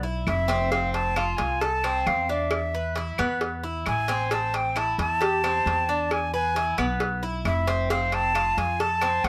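A moderate studio room lends a gentle ambience to this nostalgic, warm Latin excerpt in the Cuban son and guajira style, moving at a straight 134 BPM in 4/4 with tuning at A4 = 439 Hz. Up front, an airy, tongued alto recorder with vibrato, chiff and plate reverb carries the melody, while a metallic, double-strung Cuban tres picks arpeggios and a dark, thumpy pizzicato upright bass plays the bass line. A tight, high-tuned cowbell and woody claves sitting in the background enter at 0.3 s, over chords that move through F, E7 and Am7.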